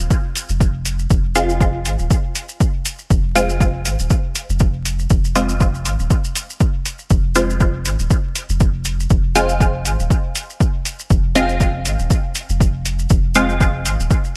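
Nocturnal and hazy, this dub techno excerpt moves at 120 BPM in 4/4 with a light 16th-note swing, resting on F minor throughout. An overdriven, punchy electronic kick sits up front alongside a soft, round sub bass that pumps under sidechain compression and holds low in its register. A muffled, pitched-down hi-hat with a compressed, sampler-style character and grainy, close maracas fill out the percussion. From 1.4 seconds a filtered dub chord stab enters, detuned and resonant with a short, plucked decay, colored by phaser, sidechain pumping and dub echo. Light reverb and a layer of vinyl crackle wrap the mix in a dusty haze.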